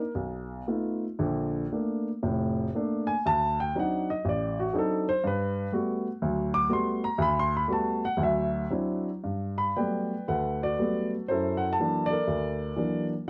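A woody upright piano sits up front in a light reverb, its notes ringing with long sustain. This is a relaxed, swinging solo jazz piece in G major at 119 BPM in 4/4, with a 66% swing on the eighth notes and a rubato feel, tuned to A4 = 444 Hz. The lone piano spans a broad compass from F1 to D6, and it carries a featured solo passage from the start to 9.2 seconds. The harmony is colourful, moving through B7#11, Bbmaj7, D7b9 and Gmaj9 before settling on D9. A new section from 9.2 seconds returns to Gmaj9 and then leans into F#7alt before this short portion of a longer piece breaks off at 13.1 seconds.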